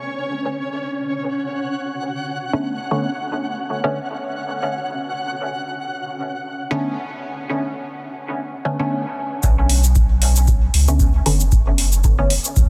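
Dub techno at 115 BPM in B minor with a light swing, hypnotic and deep, opening on a grainy, flickering granular texture with built-in reverb that breathes with sidechain pumping before muted, mellow sawtooth chord stabs on a Bm9 enter at 2.5 seconds, colored by chorus, phaser and dub echo. At 9.4 seconds the groove arrives: a round, soft sub bass, a tape-warm analog kick, and low-pass filtered shaker and metallic hi-hats. The short clip, cut from a longer piece, sits in light reverb under a dense, heavily limited modern master.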